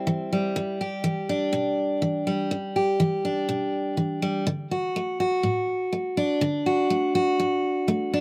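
A picked steel-string acoustic guitar carries this short country excerpt alone, playing from start to finish across its 8.2 seconds. The mood is heartfelt and sunny, moving at 123 BPM in a straight 4/4 feel in D mixolydian. The guitar has a full-bodied dreadnought tone with fresh strings and sits up front, ranging from E2 to G4 under a light reverb. The harmony moves from C to Em7, then settles on D at 4.5 seconds as the opening phrase repeats. Recorded outdoors, the sound is open and direct, with a warm glow.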